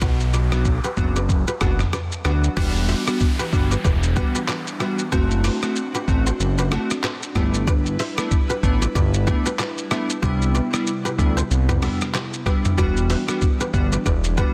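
A swung sixteenth-note groove at 94 BPM in 4/4 drives this mellow, hypnotic afrobeats excerpt in E minor, carried by a compressed, pitched-down, sampler-style drum kit with a thumpy kick, handclaps, rim clicks, hi-hat, shaker, toms and crash cymbal sitting up front. Beneath it, a fat, detuned analog bass with a wave-folded sawtooth edge and a filter sweep holds the low end just as prominently. A crisp, ringing fingerpicked kora plays a bright riff through digital delay, while glassy sine-toned keys with chorus join at 0.5 seconds to comp in fast-attack, decaying strokes. At 2.6 seconds an airy, breathy pad with a slow attack, a noise layer, ring modulation and a long release settles softly into the background, carrying the chords from Em7 through D7/F#, G6 and Cmaj7 back to Em7. An electronic noise sweep and downlifter drift behind the opening until 7.7 seconds, all framed by digital ambience and a dense, heavily limited modern master.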